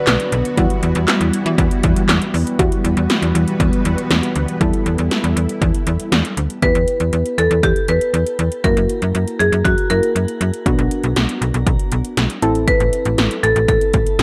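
A snappy, up-front FM bass with a metallic attack drives this cool, nocturnal synth-pop excerpt in E minor at 119 BPM, moving in a straight 4/4 feel. Beside it, 80s electronic pad drums with a punchy kick, gated snare, metallic hi-hats and handclaps carry an overdriven edge, with a short room around the claps and hats. Mellow analog keys with a sawtooth tone, chorus and a filter sweep sit in the background throughout. A vintage string machine voicing cellos holds full, evolving chords with a sub octave and ensemble chorus until 6.6 seconds. After a brief opening figure, a dark, smooth marimba played with hard mallets returns at that point to take up the melody over chords moving through Em, F#7, Bm and Am. Shimmer reverb colours the marimba, keys and strings, and a light reverb surrounds the whole mix.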